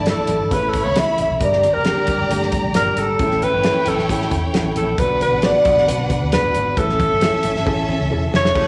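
A straight 4/4 groove at 134 BPM from a tight soul drum kit with dark cymbals, a round foam-muted fingered electric bass and very quiet low-tuned congas drives this danceable, warm 1960s-style uptempo soul excerpt, heard live through a club PA, where an up-front, subtoned alto saxophone solo with light vibrato and slapback echo carries the melody over a lush, distant bowed violin section, a woody, slightly detuned upright piano, and soft, flute-like tonewheel organ chords on fast rotary speaker, before a drum fill at 7.7 seconds.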